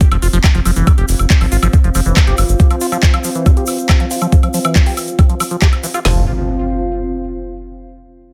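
An impact and sub drop open this alien, psychedelic trance excerpt at 139 BPM, as an overdriven garage drum kit with a knocking kick, woody snare and metallic hats drives up front beside a second overdriven layer of handclaps, hi-hat and woodblock, a grainy egg shaker in the background, and a deep, round analog bass that plays until 2.5 seconds. A squelchy, resonant acid bass riff with phaser and digital delay moves through a long filter sweep over a warbling, lo-fi tape-like pad treated with chorus, reverb and sidechain pumping. At 6.1 seconds the drums fall away, leaving the pad, the tail of the acid riff, a brief return of the bass and a final sub drop in a light digital ambience.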